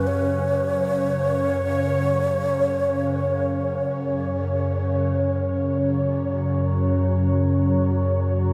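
Free-time dark ambient drone, vast and ominous, set on an F#5 chord inside a huge, wet reverb. A calm, nasal organ-like drone with ensemble chorus sits up front beside a bright, detuned sawtooth pad with a resonant filter swell, both sustaining through the whole 8.5 seconds. A barely audible, eerie FM synth bell spins inharmonic arpeggios until 5.2 s, while a close-miked, breathy bamboo shakuhachi sings a melody with vibrato and chiff through a diffuse delay before falling away at 4.6 s.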